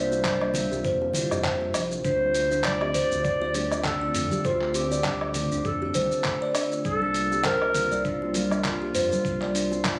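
A dark, distant clarinet carries the melody over a mellow, detuned pad, bright ringing kalimba arpeggios and a round, deep analog bass, giving this organic downtempo piece a hypnotic, mystical mood; the clarinet and kalimba have a vintage 12-bit sampler grit with delay, while the pad and bass have sidechain pumping. A dusty, tape-toned sampler-style kit of handclaps, hi-hat, shaker and woodblock joins almost at once with soft-handed bongos and congas in a lightly swung groove, and a thumpy electronic kick enters at 0.2 seconds. The harmony moves from C7sus4 to Dm7 and back, heard through light reverb and the compressed room sound of a phone recording.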